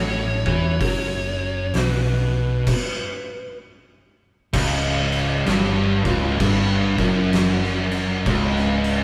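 An up-front, oversized low-tuned drum kit with a fat snare, punchy kick and gritty saturation in a bright stone room drives this ominous, sludgy stoner and doom metal excerpt, entering at 0.5 seconds beneath a pair of dark, picked fuzz riff guitars in the background, a round hollow-body short-scale bass with overdrive, and a brief fuzz lead guitar melody that ends at 3.6 seconds, before a stop gives way to a bright, double-tracked overdriven guitar riff at 4.5 seconds as the harmony moves from F#5 to Gmaj7(b5, no3)/C#, all captured live in one room with light reverb.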